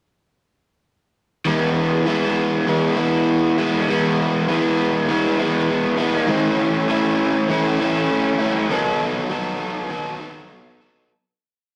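An overdriven, double-tracked electric guitar enters up front at 1.4 seconds, strumming picked chords with whammy-bar dips through E, A and B7 in a blissful, hazy solo rock piece at 100 BPM in E major, tuned to A4 = 436 Hz, its sound bathed in wet studio reverb and the warm saturation of a rough rehearsal-room recording until a fade-out from 8.7 to 11.1 seconds.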